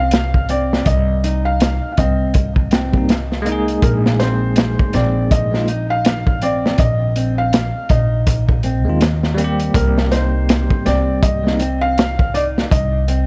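Hypnotic and brooding, this swung trip hop excerpt drifts between Cm7 and Bb7sus4 over a gritty, saturated breakbeat kit with a tight kick and an upright bass that sits up front with a woody, thumpy pizzicato tone. A soft, felt-muted upright piano carries the melody with audible action noise, while a fingerpicked nylon-string guitar with old strings plays arpeggios; both are touched with tape echo. A bell-like tine electric piano with tremolo adds bright accompaniment from 2.9 to 11.6 seconds, and the whole mix carries the worn, warbling pitch drift of old cassette tape in a small, lightly reverberant room.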